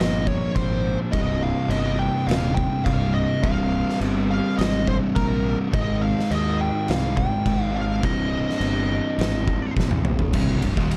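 A double-tracked, compressed fuzz guitar sits up front, grinding out a distorted riff in C minor at 104 BPM. This heavy, ominous stoner and doom metal excerpt is carried by a growly, overdriven fingered bass and an oversized low-tuned drum kit with a fat snare, punchy kick and dark cymbals in a pumping stone room. A picked fuzz lead guitar colored by wah and analog delay carries the melody until 9.7 s, and a drum fill at 9.8 s closes out a dark, small-room production moving through Bbm, Cm and Ab.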